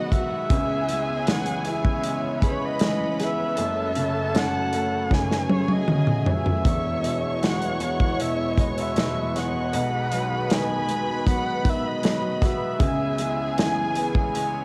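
The drums set a steady, straight 4/4 pulse at a slow ballad pace, with a punchy kick, a medium-tuned snare, hi-hat and toms sitting up front, and a drum fill from 5.1 to 6.7 seconds. This tender, heartfelt pop ballad excerpt is led by a dark, nasal erhu, a single bowed player with vibrato and portamento, singing the melody over a lush symphonic violin section that carries a smooth, focused second line. A clear, woody upright piano provides the accompaniment, while a full-bodied jumbo steel-string acoustic guitar picks arpeggios in the background. Beneath them, an evolving detuned sawtooth pad with a slow attack and long release holds sustained chords, colored by chorus and phaser and a resonant filter swell. The harmony moves through C#m7, F#madd9, Eadd9 and B6 before returning to C#m7, and the whole excerpt carries the soft grain of a home cassette recording in a moderate studio reverb.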